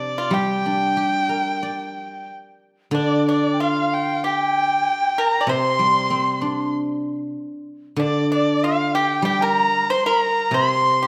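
Heard in a reverberant recital hall, this graceful, tender excerpt of Chinese traditional chamber music moves in rubato, with an up-front, smooth-bowed erhu carrying the melody with vibrato and portamento over a bright, percussive pipa second line and a ringing, silvery guzheng accompaniment, while an airy bamboo dizi with a buzzing membrane and crisp chiff enters in the background at 3.0 s.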